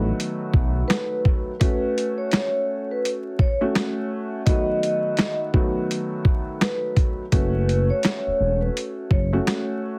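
A dark, woody upright piano with audible action noise and plate reverb opens alongside a smooth sawtooth synth bass touched with ring modulation, before gritty 12-bit sampler drums with a thumpy kick and high-tuned snare arrive at 0.2 seconds and a soft-mallet vibraphone with slow motor vibrato and analog delay carries the ringing melody from 0.9 seconds, giving this reflective, moody boom-bap hip-hop excerpt at 84 BPM in F# dorian a heavily compressed radio sound dusted with vinyl crackle.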